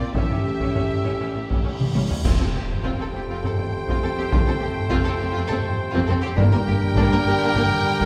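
Driven by an up-front taiko ensemble struck with hard sticks in a straight 7/8 pulse, this heroic, adventurous excerpt of an epic orchestral film score has a lush, vibrato-rich symphonic violin section carrying the melody over a soft-attack, distant second violin line, intense violas, and very quiet smooth cellos and expressive double basses holding the bass. A dark French horn section and mellow trombones sustain chords while a single distant trumpet adds stabs. A huge cymbal swell rises at 1.5 s into a drum fill and an impact at 2.2 s, with dark clash cymbals and concert bass drum joining just after at 2.3 s, all within a wet recital-hall reverb.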